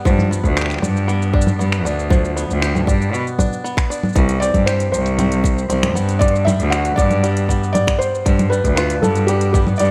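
A twangy, fingerpicked banjo arpeggio with delay opens this delicate, playful folktronica excerpt in G major at 117 BPM, joined almost at once by a bright, bowed cello bass with light vibrato, a tight, up-front electronic kick, and a produced kit of congas, finger snaps, smooth hi-hat and shaker in studio reverb, before a felt-muted upright piano carries a soft, intimate melody with audible action noise and delay from 4.4 seconds over chords moving from G7 through Cmaj7 and Gmaj7 back to G7, all in a small room ambience.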